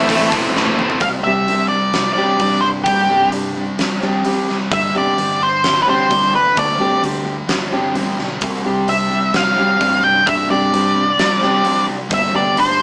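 A brooding, cathartic stretch of quiet-loud alternative rock at 130 BPM in 4/4 opens on a crowded wall of guitars. An up-front octave-fuzz lead carries the melody while a bright, compressed distorted guitar and a thick, dark fuzz guitar grind out riffs over an overdriven, round fingered bass sitting in the background. A huge arena drum kit with a fat snare, punchy kick and pumping room sound plays a fill, and at 1.0 s the brief opening riff guitar drops out as the drums settle into a half-time feel. A picked steel-string acoustic guitar with an auditorium tone joins at 1.3 s, laying arpeggios beneath the fuzz as the harmony moves from Am through Csus2 and Gsus4 to a closing G. The band sounds as if playing live in one room, with moderate reverb and a small-speaker character to the mix, cut from a longer piece.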